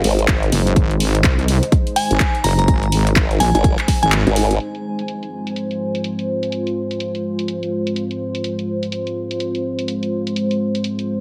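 A bass house groove at 125 BPM in 4/4, swung on the sixteenths and set in F minor, opens this aggressive, swaggering fragment cut from a longer piece, already in the middle of its drop. A punchy, up-front electronic kick drives from 0.3 seconds and drops out at 4.1 seconds, while a layered house kit of handclaps and low-pass-filtered hats runs underneath throughout. Two detuned sawtooth wobble basses sit up front with chorus and sidechain pumping: the heavy, saturated one moves between Gb1 and C2, and a formant-sweep partner holds Ab1 until 4.6 seconds, when the harmony shifts from Ab to F minor. A glassy, crystalline FM bell sings briefly between Ab5 and Bb5 through a dub echo, and a deep, moody, warbling vintage pad with a sub octave and built-in reverb carries the chords from start to finish. The sound is heavily compressed and radio-like, with light reverb.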